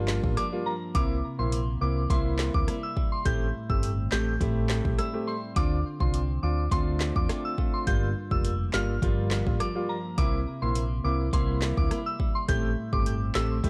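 Dry, this sultry, hypnotic dancehall excerpt sets a soft, warbling FM synth bell melody with chorus and delay over a grand piano that pumps with sidechain, twangy clean electric guitar arpeggios, a dark, round fretless electric bass with analog chorus sitting up front, and a produced afro-pop drum kit of deep kick, woody snare, metallic hi-hat, rim click and handclaps, over a Gm7, C7, Am7, Dm7 progression.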